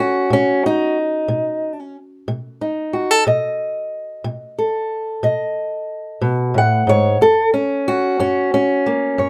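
A fingerpicked old ladder-braced acoustic guitar, dark and boxy with the woody tone of old strings, plays alone and up front in this soulful, swaggering acoustic country blues fragment in a slow 12/8 at 61 BPM, resting on B7 before moving to F# at 7.2 seconds, captured by close, detailed microphones in a dry room.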